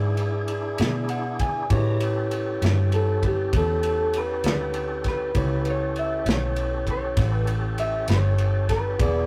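A barky, bright tine electric piano through a combo amp, a full tonewheel organ with slow rotary speaker, light overdrive and chorus vibrato, and a dark, round, foam-muted fingered electric bass open this swaggering, rollicking slow blues in 12/8 at 66 BPM, with the piano slipping in a fill from 0.8 to 1.7 seconds as the chords move from E7 to A7, a punchy, up-front acoustic country drum kit playing kick, snare and ride, and a slightly broken-up, picked, compressed electric guitar through a small old amp taking the melody from 2.9 seconds, all captured in a rough rehearsal-room recording with tube saturation and a moderate booth ambience.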